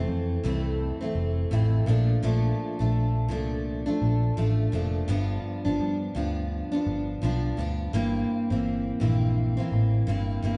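A relaxed 84 BPM pulse in 4/4 carries a gentle swing on the sixteenths, giving this short excerpt of indie bedroom pop a nostalgic, laid-back sway. A bright, full-bodied steel-string acoustic guitar sits up front, its fresh strings picked across a chord run of Fmaj7, Bbmaj7, G7 and C7/G, with a vibrato effect lending the accompaniment a soft wobble. Beneath it, a vintage muted electric bass plays throughout, dark, round and punchy, its foam-muted, amped tone anchoring the low end. Both parts play together from the start to 10.6 seconds, as if the band were captured live in one room. A wet, large studio reverb with a 1.2-second decay surrounds the pair, and the top end is rolled off above 11.0 kHz, adding to the dusty, homespun charm.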